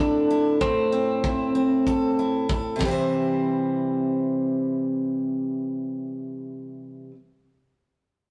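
Sunny and heartfelt, this short acoustic pop excerpt moves at 96 BPM in 4/4 with a light sixteenth-note swing, set in C major and tuned a touch sharp to A4 = 444 Hz. A picked steel-string acoustic guitar carries the accompaniment throughout, bright and full-bodied with fresh strings and audible finger squeak, sitting up front and ranging from A2 to C5. Over it, a clean, compressed twelve-string electric guitar plays the melody between C4 and D4 for the first 2.5 seconds, its warm tone touched by digital delay. A loose indie drum kit joins at 0.6 seconds with a tight kick and dark ride cymbal, playing a fill until 3.0 seconds before dropping out. The harmony moves from A minor to C at 2.8 seconds, and the whole piece sits in a moderate stone room reverb with the rough, saturated character of a rehearsal-room recording.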